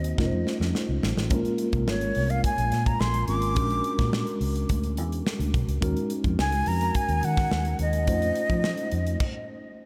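A breathy jazz flute with vibrato and tape echo sings the melody up front over mellow electric piano with subtle chorus, a round, foam-muted fingered bass and a studio drum kit with a punchy kick and bright cymbals that opens with a fill at 0.2 seconds, giving this bittersweet, urban slice of polished 1980s jazz-funk pop its motion through F7b13, Bbm9, Bb7alt and Ebm11, with the dreamy mix soaked in huge ambient reverb until a stop at 9.2 seconds.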